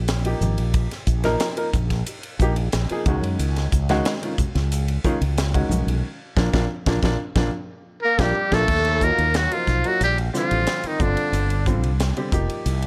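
A dark, round fretless bass with lush chorus opens this soaring, bright electric jazz fusion passage at 91 BPM, joined almost at once by a crisp drum kit with a high-tuned snare and punchy kick, a clear but worn grand piano, and soft-handed, ringing congas in the background over Bbsus4 and Dbsus4 harmony. The band hits a shared accent, a piano fill and a drum fill lead into the next section, and at 8.0 seconds a buzzy, brilliant trumpet with metal mute takes the melody up front, with scooped notes and light vibrato. A mellow, distant tenor saxophone with subtone plays a lower second line as the congas stop at 8.7 seconds, all in a small room reverb.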